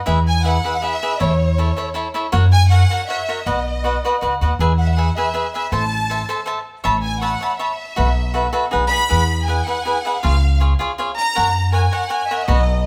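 Proud and romantic, this mariachi-flavored Mexican folk passage in a straight three-beat metre sets a close, expressive violin section carrying the melody with vibrato and portamento over crisp, bright picked cavaquinho and a woody, growly pizzicato upright bass, all played live together in a stone room with moderate reverb.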